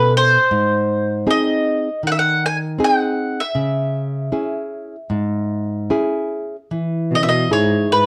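A woody, picked mandolin with doubled strings carries the melody up front in this tender, nostalgic fado-style ballad, its rubato phrasing floating over a small, fingerpicked nylon-string guitar moving through Aadd9, G#, C#m and Emaj7. A single bowed cello, rich and smooth with vibrato, enters close at 7.1 s to add a short second line just after the music turns to a new section at 6.7 s. The brief fragment sits in moderate studio reverb and bears the worn, warbling pitch drift of old cassette tape.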